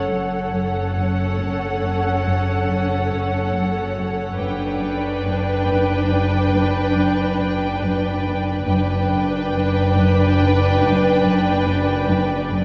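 An icy, crystalline glass pad with chorus and its own reverb holds sustained chords over a dark, distant violin section carrying the melody with vibrato, a rich, floating second violin line, a smooth viola section, a shadowy double bass and two intimate cello sections on bass and a riff entering at 0.1 seconds, the strings all bowed sul tasto at a slow 70 BPM in 5/4, moving from F#m to G/F# in this eerie, mysterious suspense-film cue set in a resonant church or concert hall.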